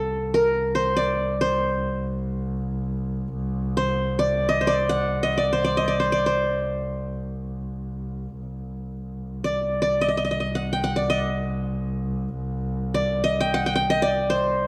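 In free time, this Turkish makam ensemble piece in makam nikriz on C unfolds with a longing, hypnotic mood across its 14.7 seconds, cut from a longer work. An up-front qanun carries the melody between A4 and G5, its plectrum-plucked triple strings sounding bright-edged, while a single bowed double bass holds a low C2 drone with a rich, focused tone and vibrato. The dark production sits in a moderate scoring-stage reverb that lends a sense of spacious depth.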